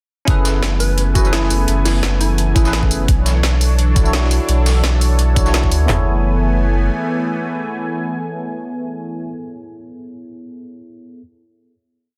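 Liquid drum and bass in a melancholic, dreamy mood, this short piece drops straight in with two layered, overdriven electronic kits, one with a knocking kick and woody snare and the other with bright hats and tambourine in a rolling two-step, plus a gritty looped breakbeat from a sampler-style kit in the background, all under a deep, round sub bass with long gliding notes, a detuned sawtooth pad pumping with sidechain, a bell-like tine electric piano in rootless held chords with chorus and delay, and a gentle, warbling FM lead heard briefly from 0.8 to 2.7 seconds, before the drums fall away near 5.9 seconds and a final chord rings out.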